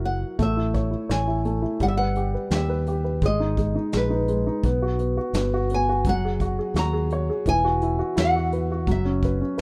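This short excerpt of an acoustic folk-pop ballad opens with an upright piano and fingered electric bass together from the very start, the piano woody and intimate with audible action noise, the bass round and up front. A flamenco guitar carries the melody from 0.1 seconds, fingerpicked in its upper register with audible finger squeak. At 0.4 seconds a vintage brush drum kit joins on hi-hat, kick and snare, dark and smooth with a punchy kick, a medium-tuned snare and a rolled-off top. The tempo sits at a steady 85 BPM in a straight 4/4, and the harmony moves through chords such as A, G#m, F#sus2 and Esus2, giving the passage a nostalgic, heartfelt mood. The sound is a rough home demo mix set in a small room ambience.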